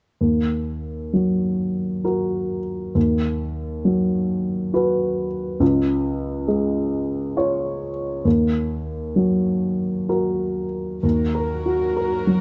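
Fragile and reflective, this short neoclassical fragment for piano and strings moves in a hesitant, rubato triple metre, its chords shifting from Eb minor through B/D# and Db before settling back on Eb minor. A dark, woody upright piano sits up front, carrying the accompaniment from 0.2 seconds. At 11.0 seconds a chamber string section slips in quietly behind it with intimate, sul tasto sustained chords touched by light vibrato, all heard through close, detailed microphones and a moderate recital-hall reverb.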